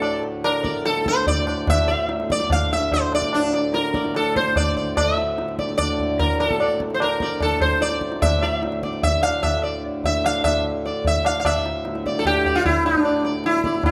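A straight 4/4 pulse at 148 BPM that keeps speeding up drives this longing, meditative Hindustani classical excerpt in raga darbari on D, where a bright, buzzing, plectrum-plucked sitar with shimmering sympathetic strings carries the melody up front, a reedy, breathing hand-pumped harmonium holds a low drone, and a high-tuned, ringing, compressed and saturated tabla keeps time, all set in a moderate recital-hall reverb, with a new section arriving at 11.5 seconds.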